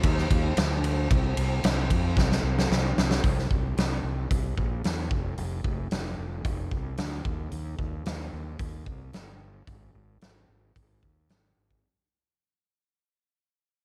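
Classic rock with a driving, brooding mood, this short cut from a longer piece rides a straight 4/4 feel. A huge arena drum kit sits up front with a natural, acoustic sound in a big room, its fat snare and punchy kick anchoring the groove alongside hi-hat and ride cymbal. A fingered electric bass, also up front, carries the low end between F1 and F2 with a bright, direct and amped tone pushed into overdriven fuzz. A drum fill from 2.2 to 3.2 seconds leads out of the opening section into the next. From 3.2 seconds onward the recording fades out, with light reverb lending the pair some space.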